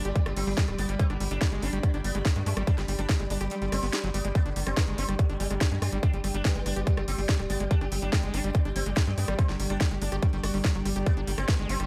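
A tight, up-front electronic kick drives this alien psychedelic trance excerpt in G major at 143 BPM, briefly dropping out between 3.5 and 4.4 seconds, while a punchy sequencer bass with tube saturation and an overdriven drum kit with cracking snare, rim click and bright hats push it forward. A buzzing, plectrum-plucked sitar carries the melody through phaser and dub echo, and a squelchy, gritty acid bass riff with tape echo and 12-bit sampler grit sits in the background, both pumping against the kick. Beneath them, an airy, breathy pad with chorus, a very quiet wave-folded drone with moving overtones holding G3, and a faint wobbling formant-sweep bass that flickers in at the very start and resurfaces around 4.8 seconds fill out the light reverb.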